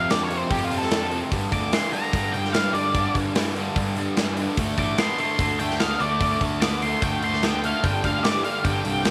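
Gritty and swaggering, this classic rock excerpt drives along at 147 BPM in G minor, with a fuzzy, distorted lead guitar soloing over two bright, overdriven rhythm guitars, one of them sitting in the background, grinding out the riff alongside a punchy, fuzz-laden picked bass. A big, acoustic rock kit sits up front with a punchy kick, a medium-tuned snare and hi-hat, while the chords move from F to G5 and D5 before landing on G minor at 7.8 s. There, a shimmering, octave-doubled fingerpicked twelve-string acoustic guitar, complete with finger squeak, slips in behind the band, all set in a moderate echo-chamber reverb with small-room ambience.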